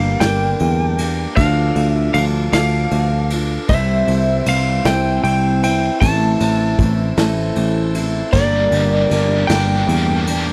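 A dry, close recording with a 1970s studio character frames this short cut from a longer folk rock and heartland rock piece, its mood dusty and reflective in a slow, straight 6/8. A slightly broken-up, compressed lead guitar carries the melody high in its range, while a picked steel-string acoustic guitar fills out the accompaniment beneath it. Up front, a foam-muted electric bass with a growly edge anchors the low end, and a soft brush drum kit, with tight kick, medium-tuned snare, ride and crash, joins at 0.2 seconds. In the background, a clean tonewheel organ holds sustained chords through a slow rotary speaker. The harmony moves from Gm through Dm, C and Am before returning to Gm at 8.3 seconds, the moment a biting, double-tracked overdriven guitar enters with a riff colored by harmonic tremolo.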